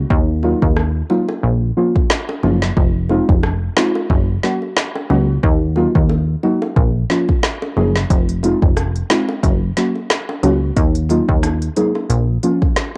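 A home cassette recording with light digital reverb frames this hypnotic, bouncy dancehall excerpt at 90 BPM in 4/4, tuned to A4 = 444 Hz, with a gentle swing on the sixteenths. Up front, an electronic afro-pop kit with a deep kick, woody snare, rim click and crisp hats sits beside a punchy, funky analog bass whose sawtooth, pulse-wave and ring-modulated tones give it a sharp pluck. A soft, warbling chord stab with chorus and a dark filter sweep cycles through Ebmadd9, Bbm, Fm7 and Gb, while tight, high-tuned bongos played with soft hands stay in the background, and the opening 8.1 seconds form a break.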